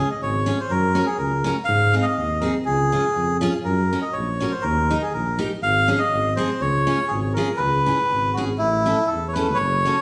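A wet large-studio reverb surrounds this short excerpt of an alpine dance band playing live together in one room, cut from a longer piece. It is jolly, bouncy alpine folk in Db major at 122 BPM in a straight 2/4, with the melodica carrying the tune up front, its reedy, nasal voice close-miked and dry. A picked steel-string acoustic guitar supplies the accompaniment with a bright, full-bodied dreadnought sound, sitting lower in the mix. Underneath, a dark tuba plays the bass line in a smooth, classical style, kept up front alongside the melody. The harmony moves through Db, Gb, Ab and Eb before the passage turns at 7.6 seconds to a new section on C#m7 and A, with the tuba stopping at 9.9 seconds just before the close.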